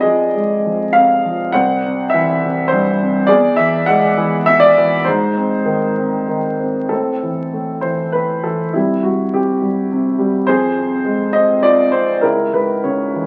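In a rubato 3/4 that drifts between 93 and 107 BPM, this bittersweet, brooding classical fragment, cut from a longer piece, features a solo grand piano, warm and present with long sustain, placed up front and ranging from C2 to F#5. The harmony moves from F minor through C, E and G#, then turns to A minor at 6.9 seconds before passing through C5 and F minor and settling on C# minor by 12.2 seconds. Moderate studio reverb surrounds the instrument, and the sound carries the crackle of a very old 78 rpm record.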